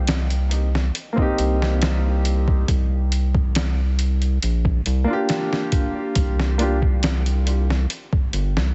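A round, deep analog bass stands out from the start, its sustained, wave-folded tone warm and up front in this brooding, hypnotic trip hop excerpt. A gritty, pitched-down sampler-style drum kit with a thumpy kick and medium-tuned snare sits in studio reverb, while a woody upright piano enters at 1.1 seconds with harmonic tremolo and tape echo before falling away at 6.8 seconds, over chords moving from Cm7 to Gm7. The whole mix has a heavily compressed, dulled radio sound with little room around it.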